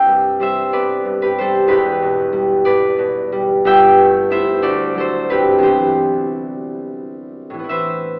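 Dreamy and serene, this brief classical excerpt for solo concert harp drifts along at 60 BPM in a lilting 6/8, its beats uneven and shaped by free rubato in C major. The harp carries everything alone from 0.0 to 8.2 seconds, fingerpicked and ringing, with a sound that sits up front and spans from deep E1 up to G5. Lush extended harmonies float by, moving from Cmaj7 through Em7, G69 and D9 before settling on Cmaj9 and touching Amadd9 at 7.7 seconds. A wet recital-hall reverb with a 1.4-second decay surrounds the instrument, as though heard from further back in the room. The overall sound carries a thin, boxy AM radio coloring, lending the gentle fragment a distant, dreamy haze.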